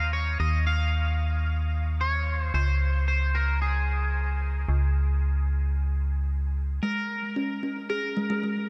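A twangy, clean electric guitar carries the melody through analog chorus and delay over a metallic FM bass in this eerie, intricate IDM excerpt at 112 BPM in Bb minor, moving from Ebsus2 to Db5 before the bass stops at 6.8 seconds and a woody, close-miked kalimba takes up arpeggios over Bbm7 through low-pass filter and delay, with a filter sweep on it running to 8.7 seconds, all set in light small-room reverb.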